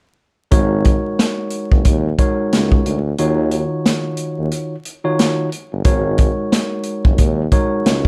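Dark, dry production flecked with vinyl crackle frames this moody, swung boom-bap hip-hop fragment, where a mellow, clean tine electric piano heard through its built-in speakers, a punchy, present tuba bass with vibrato and an up-front vintage acoustic kit with a punchy kick, medium-tuned snare, hi-hat and rolled-off top play from 0.5 to 8.1 s, moving from Ab7sus4 to Ebm9 at a break at 3.2 s and back at 5.9 s.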